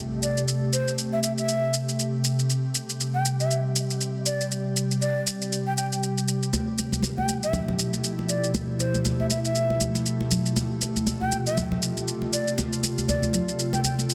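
Afro house at 119 BPM in A minor, this short excerpt from a longer piece carries a spiritual, earthy mood over a swung 4/4 groove. An ethereal, airy pad sits up front from the start, holding sustained chords with slow attack, long release, ensemble chorus and its own reverb as the harmony moves from Am7 to Fmaj9#11 at 6.5 seconds and G9sus4 at 10.6 seconds. A faint electronic impact marks the opening, and a bass bansuri enters at 0.2 seconds, its bamboo tone breathy and bright, close-miked, tongued and a little unsteady, carrying the melody through a dub echo. An overdriven, layered electronic shaker drives the rhythm prominently from that same moment, and high-tuned acoustic congas with a thick skin join at 6.5 seconds, heard in a live room. A lush hall reverb surrounds the mix, which is dense and heavily limited in a modern style.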